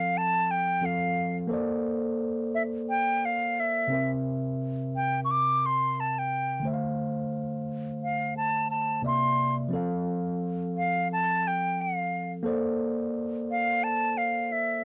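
With the soft cassette haze and light reverb of a home recording, this smooth, romantic soul fragment, cut from a longer piece and gently swung in its sixteenths, features a breathy, close-miked silver concert flute with a straight, tongued, expressive metallic tone singing the melody up front, while a clean tine electric piano, played through a combo amp, supplies warm accompaniment over chords moving from F through Bbmaj9, C7, Dm7 and C9 for the full 14.8 seconds.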